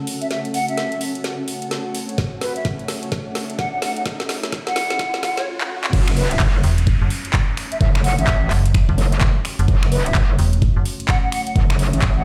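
Bass house with a swaggering, aggressive edge, cut from a longer piece: a dark, moody analog pad and a blurred, cloudy granular pad pump under a hollow, vibrato concert flute carrying gritty 12-bit sampler character and delay, while a garage kit of woody snare, metallic hats, snaps and claps builds with drum fills, a filter sweep and a background riser. The knocking kick arrives at 2.2 seconds, and after a short break the drop hits at 5.9 seconds, where a saturated, wobbling metallic bass pushes up front, joined at 6.6 seconds by a digital FM bass with tube saturation. The whole mix sits in a light stone-room reverb, like a big sound system in a bare room.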